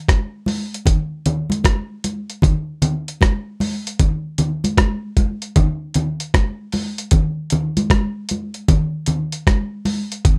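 A dusty, sampler-style drum kit leads this short reggae excerpt, its gritty hi-hat, thumpy kick and rim click sitting compressed and up front with a tape-warm character. High-tuned acoustic congas ring alongside it from 0.1 to 10.4 seconds, played with soft hands in a small room and also placed up front. At 77 BPM in 4/4 with a swung sixteenth-note feel and light reverb, the groove feels sunny and warm.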